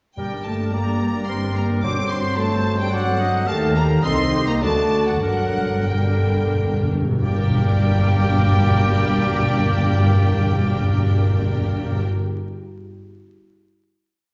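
A quick classical-period movement for symphony orchestra in G minor and 3/4, around 87-110 BPM, with a dramatic, urgent mood that slows from 2.7 to 7.2 seconds before settling on a held final chord. A lush, warm violin section carries the melody with vibrato, joined in unison by a pure, crisp-edged silver flute and, very quietly, by a second violin section doubling the tune at unison and the octave, while a dark French horn section in the background also doubles it an octave apart. A clear oboe adds a counter-melody and sustained chords, as a roomy clarinet and bassoon play chords in the tune's rhythm and a rich viola section rocks a two-note figure beneath. A focused, bright double bass section and a very quiet cello section anchor the sustained bass line. Soft-mallet timpani with round calf heads strike single bass notes and rolls, dropping out at 2.6 seconds and returning with a fill at 5.2 seconds. 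The ensemble sounds set back in a reverberant recital hall, with vinyl crackle over the sound.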